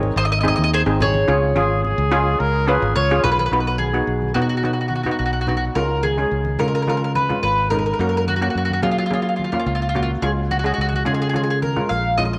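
Sunny and bouncy, this calypso excerpt rides a straight 4/4 groove, with a round, mellow mandolin carrying the melody up front over bright, shimmering steel pan accompaniment and a direct, up-front fingered electric bass, while low-tuned congas sit very quiet beneath. Between 1.6 and 3.5 seconds a distant, classical-style trumpet with light vibrato and slapback echo adds a brief second line, before the harmony moves through B6, C#, F#maj7 and back to C# in the longer second section. A moderate plate reverb gives the whole a roomy glow.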